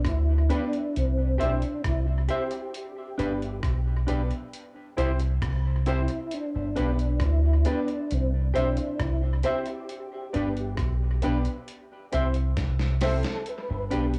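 Roots reggae with a sunny, uplifting mood, this passage cut from a longer piece rocks gently between two chords. A deep, fingered electric bass sits up front, round and punchy, while a dusty sampler-style drum kit gives a compressed, gritty sound of thumpy kick, medium-tuned snare, rim click and hi-hat, treated with cassette tape and analog delay. A mellow tonewheel organ carries the melody through chorus vibrato, a slow rotary speaker, cassette tape and dub echo. From 0.5 seconds a clean semi-hollow electric guitar adds dark, hollow-body accompaniment with cassette tape and dub echo, and a clear upright piano adds woody stabs with audible action noise. A drum fill arrives at 12.6 seconds, and the whole has the intimate feel of a home cassette recording in a small room.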